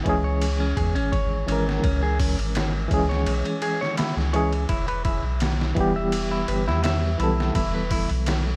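Trip hop at 84 BPM, brooding and melancholic, in a short 8.6-second cut from a longer piece, moving from C#m to Em at 4.7 seconds. Up front sits a reedy, barky electric piano, lightly overdriven with fast tremolo and tape echo, over a deep, round sub bass and a muffled, pitched-down sampler-style kit with a thumpy kick, medium-tuned snare, hi-hat and ride, overdriven in a small room. A clean picked electric guitar plays delayed arpeggios, all under light reverb and a bed of vinyl crackle.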